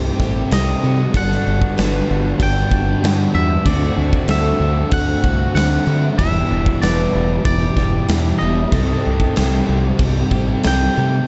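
A huge arena drum kit sits up front in this hazy, wistful shoegaze and dream pop excerpt, its punchy kick, medium-tuned snare and bright crash cymbals ringing in a hall sound from 0.2 to 10.8 seconds at a straight 95 BPM in 4/4. Beneath it, a stack of guitar riffs fills the background: a thick, dark fuzz guitar with distortion and analog chorus, a double-tracked crunchy overdriven guitar, and a slightly broken-up, compressed electric guitar through a small old amp, bathed in reverse reverb. A picked twelve-string acoustic guitar adds shimmering, octave-doubled arpeggios with fresh strings, lush chorus and tape echo, while a fingered electric bass holds the low end with a warm, direct tone. Entering at 0.5 seconds, a bright, clean, twangy electric guitar carries the melody high above, its tape echo and warbly pitch drift giving it a dreamy wobble. The harmony moves from Cm6 through Gmaj7, D7 and Em7 before returning to Cm6, all wrapped in a small room ambience and a dark production with its highs rolled off.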